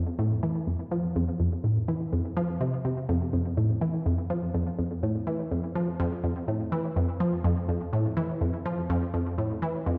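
A resonant blip pluck carries this short ambient fragment alone, its juicy, squelchy filter tone built from detuned square, sawtooth and triangle waves that snap in with a fast attack and die away on a short decay. Sitting up front in the mix, the pluck moves between F2 and F3 in F major, treated with chorus and analog delay. The tempo sits at 124 BPM in a straight 4/4, giving the cosmic, expansive mood a steady pulse. A wet concert hall reverb with a 2.0-second tail surrounds the sound, and the production is dark and warm. Cut from a longer piece, the passage lasts about 10 seconds, with the pluck sounding from 0.0 to 9.9 seconds.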